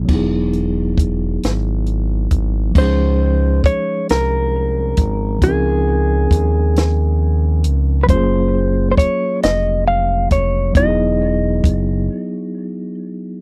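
A slow, straight six-eight pulse at 45 BPM from a compact cocktail drum kit with a punchy kick, high-tuned snare and dark cymbals sets an intimate, sensual R&B mood in Db major, where a smooth sawtooth-and-triangle synth bass with a moving notch and a mellow tine electric piano heard through its built-in speakers support a dark, fingered, compressed electric guitar melody entering at 2.8 seconds, all close and dry like a 1970s studio, before a brief break from 12.1 seconds in this excerpt from a longer piece.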